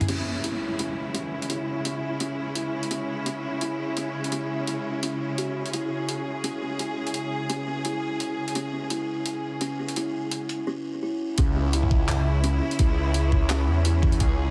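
Spacious and tense, this half-time drum and bass passage at 170 BPM in C# minor opens with lush, bright bowed strings pumping under sidechain, a woody, buzzing kalimba playing gritty, low-passed arpeggios through tape echo, a pitched-down, compressed boom bap sampler-style kit of crash, handclaps, hi-hat and toms, a very quiet pulsing gated texture and a brief electronic downlifter, while a filter sweeps the kalimba until the drop at 11.4 seconds brings in a thick, swirling phased detuned saw bass and a knocking, up-front electronic kick.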